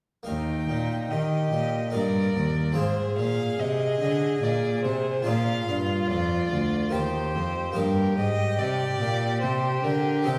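Heard from further back in a reverberant recital hall, this serene, dance-like baroque-style sonata movement in triple time, cut from a longer piece, sets a rich, smooth violin melody with vibrato above a second violin line of soft attack and expressive portamento, while a focused, up-front cello carries the bass and a dry, close-miked Flemish-style harpsichord with brilliant octave strings plucks the continuo accompaniment.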